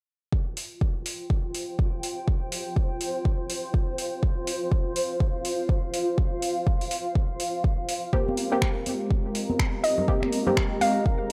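An overdriven electronic kick drum sits up front in this soulful deep house excerpt at 123 BPM, its deep, layered thump re-recorded in a large room and joined at 0.6 seconds by a drum kit of finger snaps and metallic hi-hats carrying the same grit, all riding a 16th-note swing. A cloudy granular pad drifts in at 1.1 seconds, blurred and evolving with a slow attack, mellow tone and built-in reverb, pumping under the sidechain over an Fsus2 chord. At 8.1 seconds the harmony shifts to Abmaj9 as a smooth, detuned analog pad with chorus and a long release arrives alongside a muted dub chord stab whose short, plucky hits are coloured by cassette tape and analog delay. Close, ringing congas played with soft hands sit in the background, and a hollow, bouncy square-wave pluck with a sub octave and delay offers a brief melody between Eb5 and F5. The dry, gritty hardware sound with light reverb gives the groove a soulful, analog feel.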